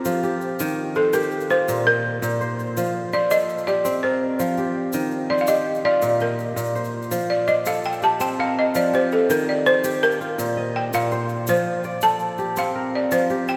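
Flowing and hypnotic, this West African traditional excerpt in 12/8 at 110 BPM features a woody, buzzing balafon played with rubber mallets carrying the melody as a solo throughout, over ringing, fingerpicked kora arpeggios up front and a grainy, bright tube shaker, all set in F mixolydian and cycling through F, Eb and Bb chords within the long, echoing reverb of a cathedral-like hall.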